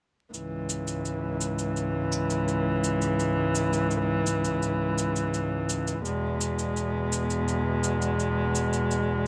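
Folktronica at 84 BPM in C# minor with an intimate, autumnal mood, where a veiled, con sordino string quartet holds dark, up-front sustained chords with light vibrato, moving from C#m to E at 6.1 s, over a quiet, tape-warm electronic shaker, all set in a small room with a touch of vinyl crackle.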